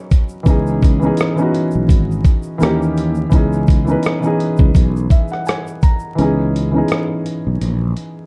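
Melancholic and hazy, this lo-fi hip hop fragment, cut from a longer piece, drifts along with a lazy swing under dark production, light reverb and a bed of vinyl crackle. A soft, felt-muted upright piano sits up front with a mellow, intimate tone, its action noise audible and its sound colored by cassette tape as it moves through C#m7, D#7b9 and C#m9. A gritty, compressed sampler-style drum kit, re-recorded in a large room, lays down a thumpy kick, hi-hat and rim click, while a grainy tube shaker stays close and dry in the background. A bright, growly fretless electric bass enters at 0.5 seconds, sustaining low notes with a direct, amped character. The piano plays a fill from 4.7 seconds, and at 6.2 seconds the shaker drops away as the music settles back onto C#m7 for a short break.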